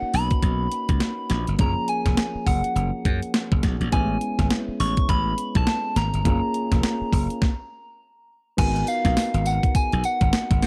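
A clean 12-bit drum machine drives this slick, confident new jack swing excerpt, its thumpy kick, medium-tuned snare, hi-hat, tambourine and crash cymbal sitting up front with an overdriven, sampler-style edge from a small room. It moves at 103 BPM in 4/4 with a 60% swing on the sixteenths, in G# dorian, and a growly, punchy slap bass sits just as close. Over them, soft electric-piano-like synth keys carry full-bodied, dark chords with a filter sweep and chorus, moving from Bmaj9 through F#maj9, Amaj7 and F#maj7. A round, keys-like FM synth lead plays the melody in a bright upper register, thickened by a sub octave and treated with chorus and delay. The groove halts for a stop from 7.4 to 8.6 seconds, and then a new section opens on G#m9, all within a dark digital ambience.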